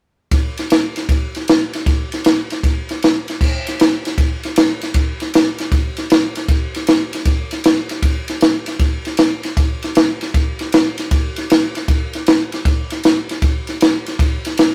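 A compact cocktail drum kit opens at 0.3 seconds, setting a rollicking, swaggering blues groove at 156 BPM in 4/4 with a swung eighth-note feel. The kit is acoustic and sits up front, its sound dry, airy and polished, with a high-tuned snare and a punchy kick alongside the ride and crash cymbals. After a brief opening passage, the performance moves into a longer second section at 3.4 seconds that runs to the close at 14.7 seconds. A light reverb gives the drums a touch of space, while the rough rehearsal-room recording lends the sound a raw character. This short fragment, cut from a longer piece, captures a lively, strutting drum performance.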